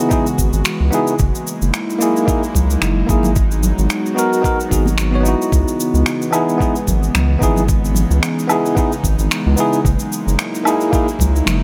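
Sunset chillout in C# dorian at 111 BPM with a swung sixteenth feel, this wistful, smooth excerpt cut from a longer piece sets a bell-like tine electric piano with tape echo over an airy, breathy pad with chorus, a round, deep analog bass up front, a gritty overdriven electronic kick, cabasa, finger snaps and woodblock, and soft-handed congas entering in the background at 2.5 seconds, all moving through C#m7, F#13 and G#m7 in light reverb.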